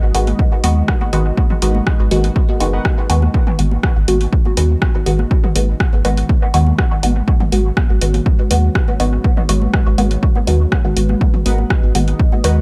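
Dub techno at 122 BPM in G# minor, cavernous and hypnotic, built on a single G#m7 chord: an up-front punchy kick and a round, deep sub bass anchor a muted, nasal, resonant chord stab that carries phaser and dub echo and gets a filter sweep from 3.3 seconds, while a tape-warm analog drum machine ticks hi-hat and rim click through dub echo, overdriven electronic congas and toms sit very quiet, a moody, detuned pad with chorus hangs in the background, and warbling, nostalgic lo-fi synth keys surface briefly at 1.6 and 11.5 seconds, with the pad, bass, stab and keys pumping under sidechain in a dark digital ambience.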